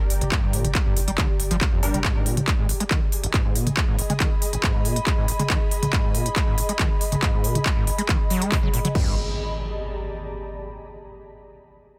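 Relentless and dark, this driving peak-time techno excerpt rides a heavy, up-front electronic kick and a layered kit of smooth hats, handclaps, toms and crash, while a squelchy, gritty acid bass riff with distortion and delay runs under a filter sweep until 9.2 seconds. A deep saturated sub bass sits in the background for the first 2.0 seconds, an ethereal airy pad with ensemble chorus hangs over the whole passage, and a brief, aggressive detuned rave stab flashes through with ring modulation and a cassette-tape tint. At 9.0 seconds the beat drops away for an up-front electronic impact, which rings out alongside the pad to close a dense, heavily limited mix that pumps against the kick.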